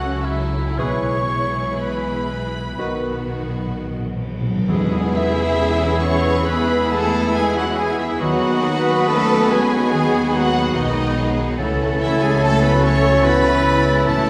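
A slow, lyrical orchestral passage in a romantic classical style opens with a lush violin section carrying the melody over smooth, even double basses, an expressive cello section in the background and a focused, very quiet viola section, while a concert harp rings out arpeggios. Around them, a hollow, airy flute ensemble, a very quiet second violin section and a warm oboe trace gentle second lines. At 0.8 seconds more of the orchestra joins: a clear trumpet section adds stabs, a mellow French horn section and a tight, very quiet trombone section hold sustained chords, a bassoon fills in the accompaniment, and a bright clarinet adds a faint second line. Timpani with medium mallets play a fill from 2.8 seconds that leads to a full-band accent at 4.7 seconds as the music moves into its second section, while a close, dry cymbal swell and tam-tam sit far beneath. The pulse flexes freely with rubato, and a wet scoring-stage reverb places the ensemble further back in the room, giving this cut from a longer piece a tender, expansive glow.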